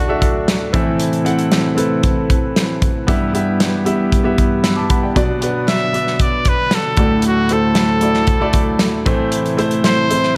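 Dramatic and earnest, this piano-driven pop piece at 115 BPM is carried by an intimate, polished concert grand with deep bass, long sustain and audible action noise, backed by a punchy, mid-forward acoustic drum kit with a rolled-off top and a very quiet, detuned sawtooth pad with chorus, while a clear trumpet with vibrato and a smooth top states the melody briefly at the start and returns from 5.7 seconds, the whole sitting in a moderate scoring-stage reverb.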